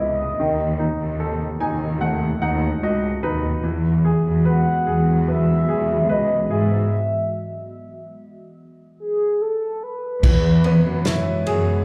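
Emotional and hopeful, this slow 73 BPM pop ballad in E major, cut from a longer piece and heard as a live club performance through the venue's sound system, sets a round, horn-like synth melody over a brilliant, woody upright piano that adds a fill at 1.2 seconds and a veiled, muted bowed cello section in the bass, with an ethereal detuned pad entering softly in the background at 4.4 seconds before the band stops at 6.9 seconds and an acoustic drum kit with a punchy kick and a fat snare joins at 10.2 seconds on a return to E add9.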